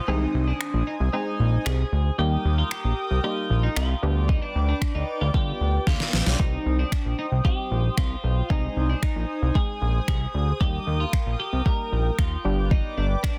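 This energetic, bittersweet dance-pop excerpt, cut from a longer piece, opens with a bright, twangy twelve-string electric guitar carrying the melody over a shimmering, retro pulse-width pad, while a very quiet downlifter sweeps through the opening seconds. The smooth R&B drum kit comes in at 0.6 seconds at a straight 114 BPM in 4/4, with a soft kick, a deep snare given soft clipping, and finger snaps sitting up front. A fat, detuned sawtooth bass with a filter sweep anchors the low end, while a crisp digital chord stab with a plucky filter fills the middle. The bass, stab and pad all pump against the sidechain. A drum fill between 5.9 and 6.4 seconds leads into the Cm chord at 6.4 seconds. The progression moves through Ab, Eb, G/D, Cm, Ab, Eb and G, tuned to A4 = 435 Hz. The sound is dry and dense, with a heavily limited modern master.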